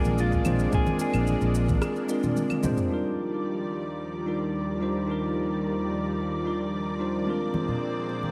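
Blissful and relaxed, this sunset chillout excerpt floats on a lush, detuned unison pad and a bell-like tine electric piano up front, with a clean, fingered electric guitar melody that ends at 2.6 seconds, a growly fretless bass and deep electronic kick that both stop at 1.8 seconds ahead of a break and drum fill, a tape-warm deep house kit of claves, rim click, shaker and filtered toms, soft-handed congas and bongos that return near the end, and an airy, breathy wind-like noise texture in the background, the whole mix dreamy and soaked in hall reverb.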